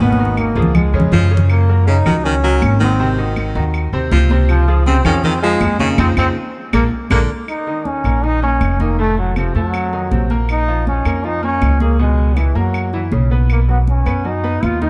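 A driving, danceable salsa groove in straight 4/4 at 160 BPM and in Eb minor opens with a drum fill over the first 1.5 seconds, carried by bright, high-tuned congas played with soft hands and recorded close and dry, and by woody, vintage-sounding claves entering at 0.4 seconds. Underneath, an up-front pizzicato upright bass gives a dark, growly, thumpy foundation with steel-string bite. A brilliant concert grand piano supplies present accompaniment with a deep low end, moving through chords such as Abm7, Gb6, Dbmaj7 and Bb7. The trombone carries the melody with vibrato, sounding distant and roomy, while a punchy, close-miked baritone saxophone adds a second line with light vibrato until it stops at 7.3 seconds, during a band accent. The second half shifts through Ebsus2, F7b9 and Bbm7 before landing on Badd9, all set in light reverb as though heard from further back in the room, in this excerpt cut from a longer piece.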